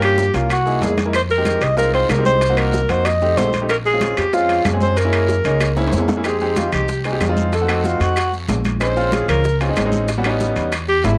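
Recorded at home onto cassette with a light small-room reverb, this fiery yet sophisticated Afro-Cuban jazz excerpt runs at 188 BPM in F minor, its harmony moving through altered and extended chords. A breathy, whispered alto saxophone with light vibrato carries the melody up front and turns to a solo at 6.2 seconds. A clear baby grand piano with audible action noise and long sustain accompanies until 10.7 seconds, while a woody pizzicato upright bass anchors the low end, and ringing metal-shell timbales, bright congas, round low-tuned bongos, dry claves, a raspy guiro and distant grainy maracas fill out the percussion, with drum fills arriving at 0.2 and 5.6 seconds.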